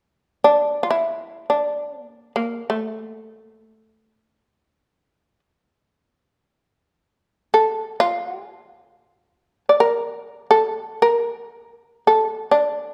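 A lone shamisen enters at 0.4 seconds and carries the melody in free time, unfolding a meditative, still piece of Japanese traditional music. Its acoustic tone is mellow yet powerful, with a percussive, buzzing edge to each plucked note, and its fretless voice sits up front in the mix. The line moves between A3 and D5, unbound by any steady pulse. A moderate recital hall reverb, lasting about 1.5 seconds, gives the instrument a sense of space. The recording is cut from a longer piece and stops at 12.9 seconds.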